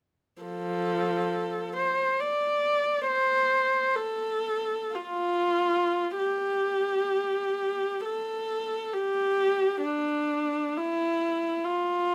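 Classical and lyrical, this brief passage cut from a longer work features a lone viola in a free, expressive style with a nostalgic mood, moving in three with a flexible rubato feel. The viola's tone is dark and intimate, played by one bowed player sitting close and up front, with a soft attack and an airy bow drawn sul tasto. Light vibrato colors its lines as it ranges from F3 up to D5. It begins at 0.4 seconds, and the music turns to a contrasting second section at 6.2 seconds before the fragment closes at 12.1 seconds. A light reverb gives the solo instrument a gentle sense of space.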